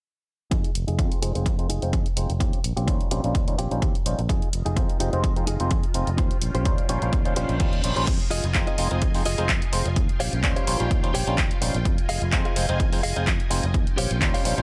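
A dry, close sound frames this funky, sensual filtered disco house cut, taken from a longer piece and moving at 127 BPM in 4/4 with a light 16th-note swing in F minor. From 0.5 s a punchy, up-front electronic kick and an analog drum machine with hi-hat, handclaps and crash cymbal drive the groove, while a growly, overdriven fingered bass holds the low end. Over them a clean, picked electric guitar plays a compressed riff coloured by 12-bit sampler grit. A stringy, percussive clav through a combo amp with phaser joins at 1.0 s. The guitar, bass, clav and strings all pump to the sidechain under a low-pass filter, and a filter sweep runs through the opening stretch. A lush, sawtooth string machine brings sustained, chorused chords from 4.3 s over an alternating Fm7 and Eb13 progression, and a reverse cymbal leads into the second section at 8.1 s.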